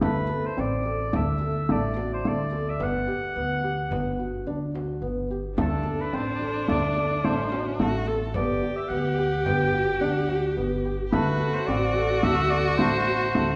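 Contemporary instrumental chamber music in 5/4, this hypnotic, pensive passage is cut from a longer piece and moves through Gmaj7 and D7 harmonies. A clear oboe carries the melody with light vibrato in a classical style, its tone sounding distant and roomy even as it sits up front. Beneath it, a felt-muted upright piano plays soft, dark, intimate arpeggios, while a pizzicato upright bass adds a woody, growly low end. At 5.6 s a bowed viola enters with a second line, its single player using expressive vibrato and portamento over a somewhat boxy tone. A very quiet frame drum, struck with hard hands and given a compressed, saturated edge, sits far beneath the others, and the ensemble is heard in the wet reverb of a recital hall.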